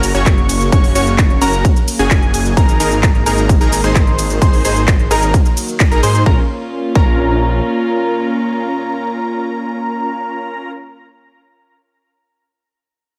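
Emotional and powerful, this festival progressive house excerpt in Bb minor at 130 BPM opens on a drop where a punchy, up-front electronic kick, entering at 0.3 seconds, drives a big-room kit of crisp hats, handclaps, cabasa and ride beneath a thick, chorused detuned saw bass, an airy supersaw stab riff with delay, a catchy plucky unison lead playing high arpeggios with vibrato and delay, and soft, floating bowed symphonic strings holding sustained chords, all of the synths and strings pumping to the sidechain as the chords move from Gb through Absus2 to Bbm at 6.3 seconds, just after the kit drops out at 6.2 seconds, and the bass stops at 7.6 seconds.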